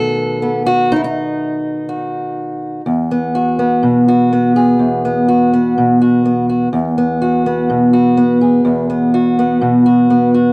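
Folk in a solo fingerstyle setting, this short passage from a longer piece moves at an unhurried 62 BPM in a straight 4/4, with a warm, pastoral mood in E major. A single fingerpicked acoustic archtop guitar carries everything from 0.0 to 10.5 seconds, ranging from E2 up to A4 and sitting up front in the mix. The harmony opens on a B7 chord before settling onto Esus2 at 2.9 seconds, where a new section begins and runs to the end. The instrument is tuned to A4 = 435 Hz. The sound is a dry, close 1970s-style studio recording, with just a light touch of reverb around the guitar.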